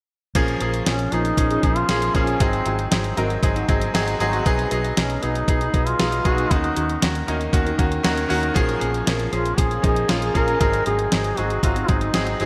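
A scooped, vibrato-laden duduk carries the folk-style melody through a digital delay from 0.9 s, leading this urgent, dramatic 1980s-style pop passage in Bb minor at 117 BPM, over a brilliant, up-front grand piano, a dark, round and punchy muted electric bass, a sampler-style drum machine with a thumpy kick and fat snare, and very quiet, detuned, mellow synth brass stabs, all set in a lush hall reverb with bright 1980s-style digital production.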